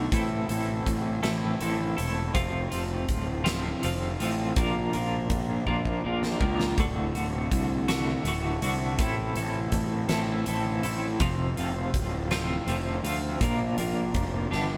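A bright, twangy twelve-string electric guitar carries this cathartic, bittersweet passage of quiet-loud alternative rock, its clean, compressed arpeggios shimmering with tremolo from D2 to Bb4. Beneath it, a fuzz-laden picked electric bass growls with overdrive in the low register, punchy and up front. A huge arena drum kit with a fat snare and a punchy kick fills a pumping hall-like room on hi-hat, kick and snare, with a drum fill at 5.7 seconds and another at 14.5 seconds. The slow 6/8 pulse sits at 54 BPM in dotted quarters, moving through Am, F, Bb and D before circling back. The band plays live in one room under light reverb, and this section is cut from a longer piece.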